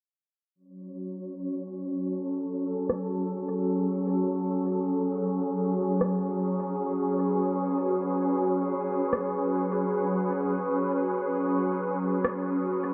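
A soft, organ-like pad sits up front in this hazy, meditative ambient dub excerpt, holding sustained F# minor chords from 0.8 seconds with a pure, sine-like tone, slow attack and long release, thickened by ensemble chorus and its own reverb. A filter sweep runs across the pad for the whole passage, lending it a shifting, bright character. An airy, breathy wind-like texture of tuned noise joins at 0.9 seconds, sitting higher in pitch and darker, a little lower in the mix than the pad, with its own built-in reverb. From 2.9 seconds an electronic rim click enters, tape-toned and re-recorded in a small room, its hits trailing into dub echo. The tempo is a relaxed 77 BPM in 4/4 with a light swing on the sixteenths, and the whole piece stays on a single F# minor chord. A wet echo-chamber reverb and a low-pass filter give the production a dusky, cushioned sound, and the music is cut from a longer piece.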